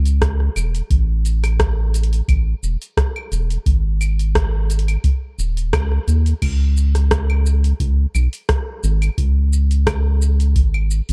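Smooth and wistful, this short sunset chillout excerpt in C# minor moves at 87 BPM in 4/4 with a gentle 16th-note swing, cut from a longer piece and shifting into a new section at 6.4 seconds. A round, up-front analog bass blending square, sine and triangle waves with a wave-folded edge anchors the low end from the start, joined almost at once by a deep analog electronic kick and a layered, tape-warm deep house kit of claves, crash cymbal, hi-hat, rim click and shaker that sounds re-recorded in a small room. The production is dark and warm, with little reverb.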